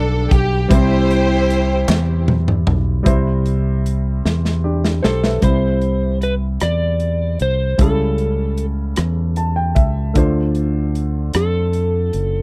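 Soulful and uplifting, this slow gospel excerpt moves at 51 BPM in a straight 6/8, centred in C major. A rich, lush string section carries the melody with vibrato for only the opening 2.3 seconds, while a clear concert grand piano with deep bass and short sustain accompanies throughout and adds a fill from 9.0 to 10.2 seconds. A punchy fingered electric bass sits up front beside a studio drum kit with a medium-tuned snare, punchy kick, hi-hat, rim click and toms, and the drums play fills leading into each new passage. A hollow group handclap sounds briefly near 1.9 seconds. From 5.0 seconds a dark, slightly broken-up electric slide guitar takes over the melody as the harmony moves through Cmaj7, A7/C# and Dm7. The sound is dry and close, in the manner of a 1970s studio recording.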